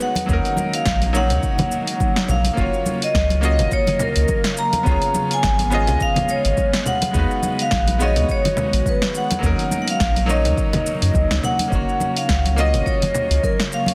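Sunset chillout with a smooth, warm mood and a lightly swung groove, cut from a longer piece. A dark, ringing vibraphone played with medium hard mallets carries the melody, its slow motor vibrato and tape echo giving it a hazy glow, while a bright, worn concert grand piano with audible action noise and deep bass comps underneath, also through tape echo. An ethereal, warbling pad of detuned vintage tones sits in the background with ensemble chorus and its own reverb, holding long chords that move from D#m7 through F#maj7, C#7 and B6. The overdriven deep house kit brings a punchy snare, hi-hat and shaker, joined at 0.3 s by a deep, overdriven electronic kick and a round sine sub bass that stands as the loudest part. Close, dry acoustic congas ring quietly in the background, and the whole is set in light digital ambience with a dense, heavily limited modern master.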